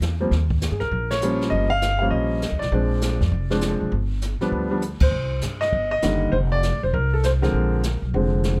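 A warm, deep-voiced concert grand piano carries the melody up front in this swinging, sophisticated jazz piano trio fragment, entering at 0.2 seconds over changes such as Eb7, Cm7 and Bb7. Beneath it, a woody, thumpy pizzicato upright bass sits close, while a brushed drum kit with dark cymbals and a boomy kick adds a natural studio-room feel and a short fill. The trio hits band accents at 1.1 and 5.0 seconds, all framed by light reverb.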